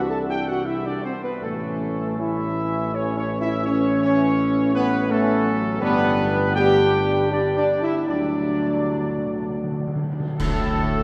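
Set in a wet cathedral reverb with a long, hanging decay, this short classical ceremonial fanfare in 3/4 sounds majestic and triumphant, and it is cut from a longer piece. A clear trumpet section carries the melody with light vibrato and a smooth top, its classical phrasing slightly loose, while a warm, soft-attacked French horn section and a bright, tight trombone section hold sustained chords beneath it. A mellow tuba anchors the bass throughout. The harmony moves from Cadd9 through A and G to D. At 8.1 seconds, round, close and dry timpani on soft mallets begin a fill, joined by a cymbal swell, dark clash cymbals and concert bass drum, leading to a full band accent on D5 at 10.4 seconds.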